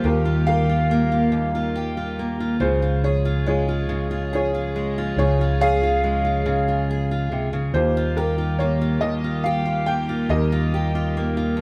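In a slow, straight 3/4 at 70 BPM, this tender, nostalgic acoustic folk-pop ballad in Eb mixolydian sets a worn, woody, slightly detuned upright piano melody up front beside a fingerpicked steel-string acoustic guitar with audible finger squeak, while a round fretless electric bass anchors the low end and an intimate chamber string section holds soft-attack sul tasto chords with light vibrato in the background, all heard as a band playing live in one room with wet reverb over an Ebadd9 that moves to Db at 2.6 seconds and returns at 7.7 seconds in this 11.6-second cut from a longer piece.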